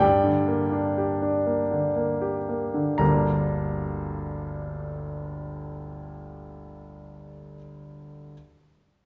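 Melancholic and yearning, this short classical fragment cut from a longer piece unfolds in G minor at a slow, rubato 56-66 BPM in 3/4 time. A single concert grand piano carries the accompaniment throughout, sounding from 0.0 to 8.3 seconds across a range from G1 to Bb5. Its tone is clear and smooth with a deep bass and a vintage character, placed up front in the mix. The opening section, which begins on a G minor harmony, slows down over its first 3.0 seconds before a new section begins at 3.0 seconds. A moderate reverb from a scoring stage, with a decay of 1.7 seconds, surrounds the instrument. The tuning sits at A4 = 443 Hz.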